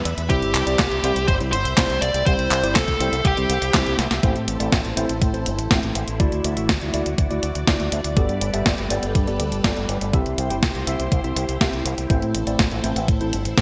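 Danceable and nostalgic, this italo disco excerpt runs at 122 BPM in A dorian, with a thumpy overdriven electronic kick and an up-front 12-bit drum machine of handclaps, hi-hat and medium-tuned snare under gated reverb alongside a bright, punchy fingered bass with an envelope filter. A worn, slightly out-of-tune tine electric piano stabs through a combo amp with overdrive and analog chorus, while a lush sawtooth string machine holds slow-attack chords over a progression moving from C through Am, Dadd9 and Gadd9. A dark, fuzz-distorted lead guitar carries the melody with delay from 0.3 to 3.9 seconds before a drum fill at 4.0 seconds, all set in a lush hall reverb with bright 1980s-style digital production.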